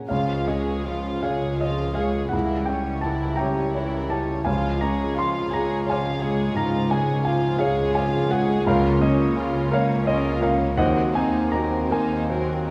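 Classical romantic writing for piano and orchestra, this brief, tragic and passionate passage moves in a slow, rubato 12/8 at roughly 49-58 BPM, opening in Db major before darkening toward Bb minor at 8.7 s. A baby grand piano sits up front with a natural, warm tone, carrying the melody across a broad span from Db2 to C6. Violins share the tune with a soft, floating sul tasto sound, while a second violin line and very quiet, intimate violas with vibrato fill in the harmony close beneath it. A dark, distant French horn section holds sustained chords in the background, and rich cellos and double basses anchor the bass quietly from the background. The strings and horns all enter at 0.1 s, and a generous scoring-stage reverb wraps the ensemble in a roomy, wet space, with a diminished chord at 2.3 s adding early tension to the yearning harmony.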